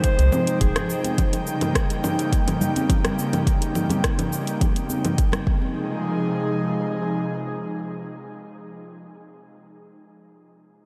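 Organic downtempo with a hypnotic, earthy mood, this short excerpt cut from a longer piece moves in a straight 4/4 over Fm7 and Eb7 chords. An airy, breathy pad sits up front for the whole passage, its detuned, chorused layers with a noise edge holding long sustained chords that pump with sidechain motion. A distant, roomy clarinet in a classical style plays a brief solo melody through an analog delay, stopping at 1.1 seconds. An overdriven electronic kick thumps deep and up front, joined by a produced afro-pop kit of congas, metallic hats, rim click and shaker, while a round sine sub bass pulses only briefly near the start. Ringing acoustic congas and bongos, struck with hard hands, sit in the background until 5.7 seconds, after which the pad carries on alone, the dreamy mix soaked in a huge ambient reverb.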